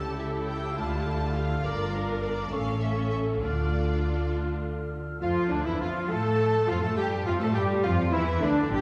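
A rich, up-front double bass section anchors this dramatic, urgent classical-period orchestral movement in 6/8 with a rubato feel, heard in a short cut from a longer piece. Above it, a distant violin section carries the smooth, vibrato-laden melody, while a cello section, a lush viola section and a chamber violin section in the background fill out the bowed texture. A very quiet, airy flute ensemble with crisp attack and a mellow, roomy solo clarinet add second lines from the opening. At 5.2 seconds the music moves into a new section as a warm solo oboe enters in the background, a close-miked French horn section holds sustained chords, and a very quiet, distant trumpet section punctuates with clear stabs. The whole ensemble sits back in a reverberant scoring-stage space, lending the harmony, which moves through minor and dominant chords, a grand, spacious sweep.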